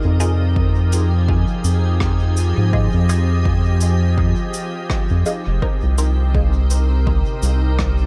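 Drenched in studio reverb, this deep, spacious ambient dub clip with a gentle swing sets a calm, pure organ-like pad with its own ensemble chorus and built-in reverb over an up-front, round analog bass. Muted, nasal chord stabs sit in the background through phaser, analog chorus, cassette tape and dub echo until 6.2 seconds. Dark, smooth cabasa and rim click carry their own dub echo, while a punchy, layered electronic kick drum enters at 0.6 seconds, as the harmony moves from Fm7 to Cm7 at 5.6 seconds.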